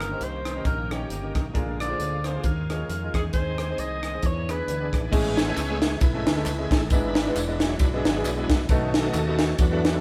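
A breathy, whispered tenor saxophone carries the melody over a brilliant upright piano, a shouting tonewheel organ with slow rotary speaker and light overdrive, a punchy fingered electric bass and a crisp, gritty fusion drum kit in this reverent, uplifting uptempo gospel excerpt at 134 BPM with a swung feel, until at 5.1 s the saxophone has dropped out, the music settles into A major for an organ solo, and tambourine and handclaps join in the background, the band heard live in a moderately reverberant stone room.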